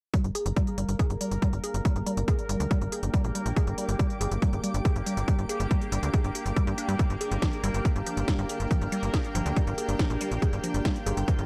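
This psychedelic trance excerpt opens at 0.1 seconds with a heavy, up-front electronic kick, a techno kit of cracking snare and smooth hats with a tape-warmed, small-room character, and a woody, wave-folded pluck riff that carries chorus, digital delay and sidechain pumping. A tight, punchy sequencer bass joins at once, its nasal sawtooth-and-square tone snapping in with a fast attack and driving the groove from underneath. Just after, a bubbling texture of resonant, randomly stepping filters sustains chords around the riff, widened by chorus and its own reverb and pumping with the sidechain. At 1.6 seconds a bright, blurred granular pad drifts in high above, its detuned unison voices forming an evolving cloud that breathes with sidechain pumping. The dark, dry production keeps the mood alien and hypnotic across the whole section.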